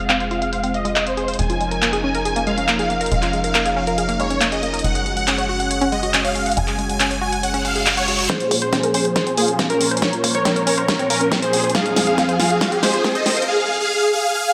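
Bathed in a lush hall reverb, this excerpt of uplifting trance sounds emotional and soaring, with a straight 4/4 pulse and sidechain pumping breathing through the synths. Huge detuned supersaw chords carry the melody up front, colored by phaser, ensemble chorus, delay and a sweeping low-pass filter, while a thick, slow-attack unison pad holds sustained chords underneath and a wave-folded unison pluck spins delayed arpeggios. A tight, dark sequencer bass drives the opening until 8.3 seconds, alongside a big-room kit whose huge snare, handclaps and filtered hi-hats sit up front. A very quiet reverse cymbal and riser arrive at 7.6 seconds, leading into a build-up at 8.3 seconds, where an airy, evolving supersaw stab adds a second line in the background and a punchy electronic kick joins beneath a drum fill. The chords move from Fm through Db6/F and Gbsus2 to Bbmadd9 before returning to Fm.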